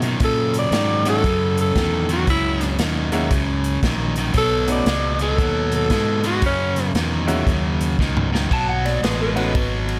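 A swung shuffle at 116 BPM drives this laid-back, soulful electric blues in B mixolydian, a short cut from a longer piece. An overdriven, up-front stack guitar picks a low riff while a round, punchy fingered bass and a swinging big-band kit with dark cymbals and a punchy kick hold the groove throughout. A raspy, growling tenor saxophone takes the solo from 0.2 s, with scooped notes and light vibrato bathed in plate reverb, as a brilliant baby grand piano with audible action noise and long sustain fills in the middle register. A drum fill leads into a brief solo at 8.5 s from a slightly broken-up, lo-fi electric guitar through a small old amp, also touched with plate reverb. The harmony moves between F#7 and B7, and the whole sits in a light reverb.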